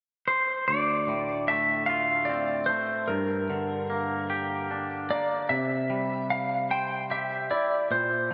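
A clean lap steel guitar opens at 0.3 seconds, carrying a slide melody in a high register, and a twangy electric guitar joins at 0.7 seconds with fingered arpeggios that reach from deep bass notes up into the treble. This cinematic, melancholic rock fragment moves slowly in a straight 6/8, drifting through Dm7, Gm and C before it cuts off at 8.3 seconds, clearly lifted from a longer piece. Both guitars sit up front with a compressed, electric tone, and each carries slapback echo and analog delay that trail behind its notes. A lush hall reverb with a long decay surrounds the pair, giving the sound a big arena scale.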